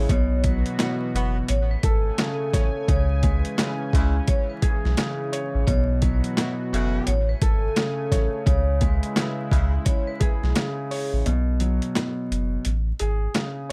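A gritty, overdriven boom-bap drum kit with a thumpy kick and compressed, sampler-style punch swings its sixteenths at 86 BPM in C# minor, while a round, deep dub sub bass sits up front beneath a warm grand piano. A ringing, metallic vibraphone carries the reflective, moody melody through tape echo, mellow jazz horn stabs enter at 0.8 s, and a lush, detuned sawtooth pad glows in the background over vinyl crackle and light reverb. At 11.3 s the kick drops out for a brief closing section as the piano lingers until 13.7 s.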